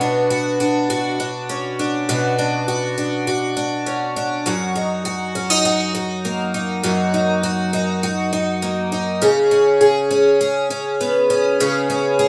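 A rough home-demo sound wrapped in wet studio reverb frames this floating, dreamy dream pop excerpt, where a lone picked twelve-string acoustic guitar sits up front with bright, shimmering, octave-doubled fresh strings and a boxy body, its lush chorus and digital delay drifting over chords of Bmadd9, F#6 and C#5 until the cut at 12.3 seconds.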